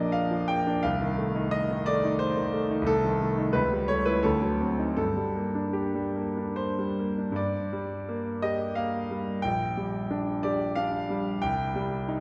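Lyrical and warm, this short cut from a longer romantic character piece for solo piano moves in a rubato 3/4 between 69 and 94 BPM in G minor, with a smooth, vintage-toned grand piano sitting up front, ringing with long sustain across a range from Bb1 to G5 inside a lush scoring-stage reverb, its harmonies passing from Bb through diminished and dominant colours to settle on G minor at 5.0 seconds before a new section opens at 7.4 seconds and drifts toward C minor.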